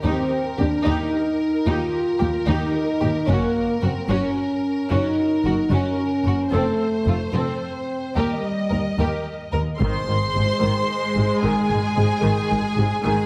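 Moving at 74 beats per minute in a broad, straight 12/8 pulse of dotted quarters, this cinematic orchestral film cue feels adventurous and majestic, a passage cut from a longer score. A violin section carries the melody between Bb4 and C6 with a focused, lush vibrato, while a second violin line sits below in a richer, more intense voice, and violas fill in accompaniment with expressive portamento. Cellos in the background and a smooth, even double bass section anchor the low end, as a mellow, close-miked French horn section holds sustained chords up front. The harmony moves from Eb through Gb, F and back to Eb before settling into Ab major at 9.8 s, where heavy-stick taiko and a very quiet calf-headed timpani on Ab2 strike together; the taiko also marks a brief earlier hit at 3.3 s. A moderate recital hall reverb gives the ensemble space, though heavy multiband compression lends the whole a dense, radio-like sheen.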